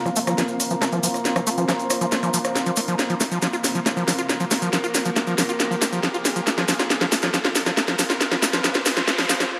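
Set in a lush hall reverb with a high-pass filter on the mix, this excerpt from a longer psychedelic trance piece sounds intense and hypnotic: a straight 4/4 build-up that runs as one continuous drum fill. Up front, a layered electronic kit with a cracking snare, bright hi-hats and rim clicks, re-recorded in a small room, drives the passage alongside a grainy, vintage-sounding acoustic cabasa. An overdriven acid bass riff, squelchy and gritty with a resonant sawtooth pluck, carries distortion and dub echo while a filter sweep moves across it throughout. In the background, an overtone-sweeping drone holds sustained chords with moving overtones, chorus and its own reverb, and a very quiet granular cloud pad adds a blurred, detuned, mellow haze. A faint electronic riser enters at 2.0 seconds, and a noise sweep arrives at 8.2 seconds to close the build.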